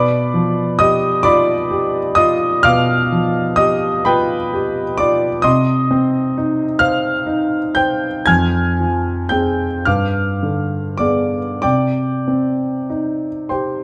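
In a slow, rubato 12/8 lilt, this yearning, wistful romantic nocturne for solo concert grand piano unfolds as an excerpt from a longer piece, its intimate, up-front tone carrying deep bass and audible action noise under light reverb in a dark production, while the harmony passes from G7/B through Cm, Fm and G7b9 before settling on Cm at 11.6 seconds.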